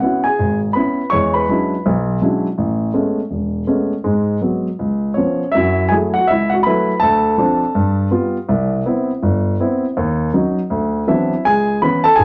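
Sophisticated and warm, this short solo jazz passage from a longer piece features a dark, mellow grand piano placed up front, moving with a swung, rubato feel across a range from deep bass up into the upper register. The harmony drifts through rich seventh and extended chords, opening on C#m7 and passing through Amaj9, F#m7 and Cmaj7 before returning to C#m7 near 11.4 seconds. A wet club reverb surrounds the piano, and its rolled-off top end keeps the sound mellow.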